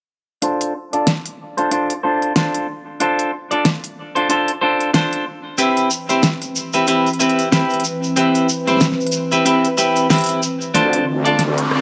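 A swung 93 BPM glitch hop groove in D dorian opens this funky, playful excerpt, with crisp hats, rim clicks and a fat snare from an up-front pop drum kit backing picked stabs of clean electric guitar run through low-pass filtering, digital delay and a filter sweep over Dm7 and Cmaj7. At 5.6 seconds a warbly, nostalgic, lo-fi pad of detuned sustained chords with chorus enters alongside a grainy, bright tube shaker. At 10.7 seconds the build-up arrives with a drum fill, another filter sweep and a heavy, saturated wobble bass, and an electronic riser joins at 11.1 seconds, all set in a moderate plate reverb with a dark, softened top end.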